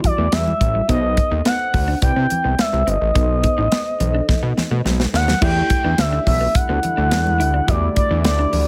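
An expressive, mellow sawtooth lead with portamento and vibrato sings up front over a late-night, danceable early-eighties boogie funk groove at 106 BPM in E minor, driven by a tight, airy acoustic drum kit with a drum fill at 4.3 seconds, a fat, detuned analog bass, soft, round FM electric piano with chorus and phaser, a dark, clean picked electric guitar riff bathed in lush chorus, very quiet close congas, and a warbling vintage analog pad that slips in at 5.4 seconds as the chords move from Em9 through B7b9 and Cmaj9 to Em11, all set in studio reverb with a faint mains hum in this excerpt from a longer piece.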